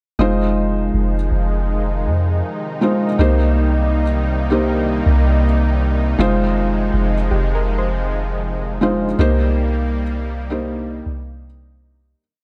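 Set in a straight 4/4 groove, this short, moody and sensual R&B piece unfolds over alternating Fm7 and Cm7 chords. Up front, a felt-muted upright piano plays rhythmic chords in drop-2 voicings, its thick felt giving a mellow, intimate, vintage tone with audible action noise. Beneath it, a soft 808-style bass holds long, deep sub-bass notes with pitch slides, while a lush, detuned sawtooth unison pad sustains the chords with a nasal brightness and a chorus shimmer. In the background, a gentle, round pluck scatters notes through chorus and digital delay until it drops out at 9.3 seconds. The mix sits in light reverb and fades out from 9.2 seconds to the end.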